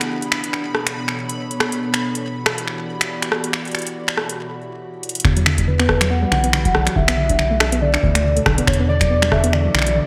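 A swung 140 BPM groove in 4/4 opens this eerie, cerebral IDM excerpt in E dorian, with an up-front, tape-warm analog drum machine of finger snaps, metallic hi-hats and rim clicks under gated reverb, while a glassy FM pad holds chords and a faint, pulsing, detuned texture shimmers in the background until 4.4 s. After a short break and a drum fill at 5.0 s, a deep electronic kick, a rubbery, hollow square bass and soft, round plucked arpeggios with digital delay enter at 5.2 s, and a warbling, nostalgic lead with vibrato takes the melody from 5.7 s. The mix is bright 1980s-style digital production, bathed in a lush hall reverb with shimmer on the synths.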